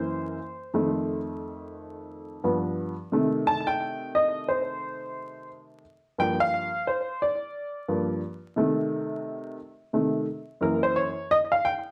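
Vinyl crackle sits under a moderate studio reverb, and the piano's slapback echo lends the recording a dusty, close feel. This cool, mellow hip hop excerpt moves at 88 BPM in 4/4, with a 61% swing on the 16ths and a tuning of A4 = 435 Hz. A lone upright piano carries everything from 0.0 to 11.7 seconds, its woody, slightly detuned tone sitting up front with a short sustain across a range of F2 to A5. The harmony in C dorian moves through F7, G7, Cm6, Gm7, back to Cm6 and then F#7 before the chords drop out at 11.3 seconds. The result is a compact excerpt cut from a longer piece.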